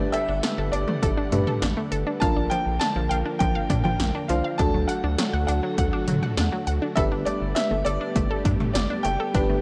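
Straight 4/4 electronic pad drums with a punchy kick, gated snare, metallic hats, cowbell and toms drive this upbeat yet wistful synth-pop passage, where a round, deep analog bass sits up front beneath glassy, bell-like FM electric piano, detuned sawtooth unison plucks with tape echo, and vintage string-machine violas held in the background, while an open baby grand piano carries the melody through tape echo and shimmer reverb over a Gadd9, Bb and D progression, all captured with a gritty cassette character.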